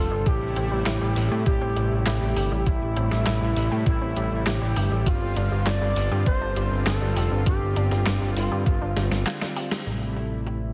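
Driving and nostalgic, this short synthwave passage in straight 4/4 is cut from a longer piece and moves from Am7 to G7sus4 at 5.1 seconds before returning to Am7 at 9.9 seconds. A smooth, mellow sawtooth lead with portamento and vibrato carries the melody until 9.2 seconds, touched by subtle chorus and delay, while a very quiet, pure FM bell adds a second line in the same register, shimmering with chorus and phaser. Beneath them, a brassy, bold analog pad holds sustained chords in the background with a filter swell and sidechain pumping, and a round, wave-folded analog pluck spins arpeggios through chorus and digital delay. A fat, thick, detuned bass sits up front with saturated, nasal weight and sidechain pumping, joined by the overdriven, thumpy electronic kick, which plays until 8.8 seconds. A sampler-style drum machine adds handclaps, hi-hat and a medium-tuned snare, all overdriven and re-recorded in a large room, leading into a drum fill and brief break near the end before a band accent closes the passage in a dense, heavily limited mix with light reverb.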